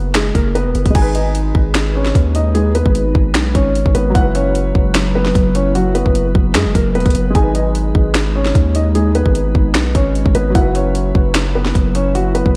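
A soft, felt-muted upright piano carries the melody from the start, its action noise audible beneath a diffuse ambient delay, while a dark concert grand with analog chorus sits in the background over a deep, sine-toned 808 bass that decays after each fast attack. Up front, a half-time trap kit brings a hard-clipped kick, sharp snare, metallic hi-hats, finger snaps and crash cymbal. At 1.9 seconds a glassy, ethereal FM pad with ensemble chorus and phaser swells in slowly behind them, deepening the melancholic, brooding mood of this dreamy, reverb-soaked trap passage.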